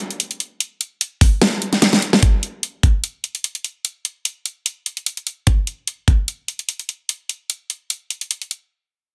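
Menacing and aggressive, this half-time dubstep fragment from a longer piece opens on a drop, with an up-front, layered electronic drum kit driving a huge snare and lightly swung hi-hats, while a knocking electronic kick enters at 1.2 s ahead of a drum fill from 1.8 to 2.2 s, both drum parts carrying small room ambience within light reverb and a dense, heavily limited modern master.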